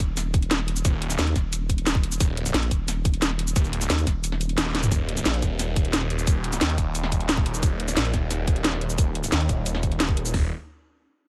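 Dark technical drum and bass at 177 BPM in 4/4, this short, futuristic and aggressive cut opens straight into a drop. Two layered electronic drum kits sit up front in a dry, small-room sound: one carries a tight kick, toms and metallic hats, the other a cracking snare, shaker and more toms. A nasal, wobbling vowel-sweep bass with a resonant formant filter and mellow chorus holds the low end until 4.6 seconds, while a snarling, growling saw bass, detuned and bright with distortion and overdrive, joins at 0.8 seconds. The kick drops out just before a drum fill at 4.7 seconds, and from 4.9 seconds a filter sweep rides the detuned saw bass through the second half. The drums and the saw bass run on to the cut at about 10.4 seconds.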